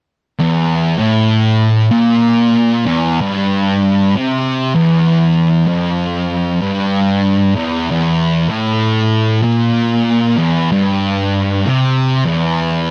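Dry and close, this 1970s-style studio recording puts a lone thick fuzz guitar up front, double-tracked and distorted, playing alone from 0.4 to 12.9 seconds. The metal part sits low in the guitar's range over a slow, lightly swung 4/4 feel, brooding and hypnotic across this short cut from a longer piece.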